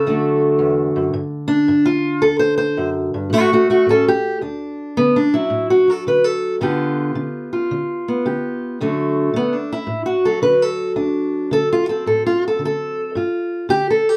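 Acoustic country blues with a swaggering, soulful swing, this short excerpt from a longer piece features a lone fingerpicked steel-string parlour guitar, dark and boxy and sitting up front in light reverb, playing a short phrase and then restating it at 4.4 seconds, moving through D, G and A chords with bluesy sevenths.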